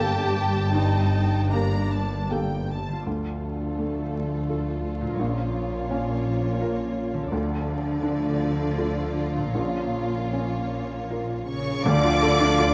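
This sorrowful, moving cinematic film score in a rubato 3/4 opens with a lush orchestral bed: a rich, vibrato-laden violin section carries the melody over a second, smooth-topped violin line, while clear violas, a soft, intimate felt-muted upright piano, a very quiet bright harp playing ringing arpeggios, even bowed double basses and expressive cellos fill out the harmony and bass. Around 3.1 seconds a dark, vintage French horn section slips into the background with sustained chords, and at 11.9 seconds a hollow flute, a very quiet mellow cor anglais and round, softly struck timpani join briefly before this fragment of a longer piece cuts off. Close, detailed microphones and light reverb capture the ensemble, with vinyl crackle beneath.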